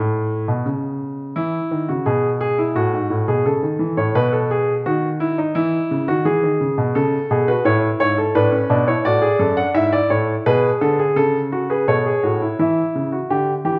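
A classical, baroque-style fugue in three voices for solo piano, this short excerpt cut from a longer piece carries a joyful, stately mood at a moderate pace in a straight four-beat metre. A baby grand piano plays alone throughout its 13.8 seconds, spanning from low F#2 up to F#5, with a warm, natural tone, short sustain and an up-front place in the mix. The harmony opens outside any chord before settling into a steady chain of chords that moves through E, F#m7, B and E, arrives home on A, then continues through Bm7/A, E/G# and A/C#. Near the close, at 12.6 seconds, the music turns toward a new section on a C#dim chord. The instrument sits in a moderate recital-hall acoustic with a reverb tail of about 1.5 seconds, giving the counterpoint a sense of space.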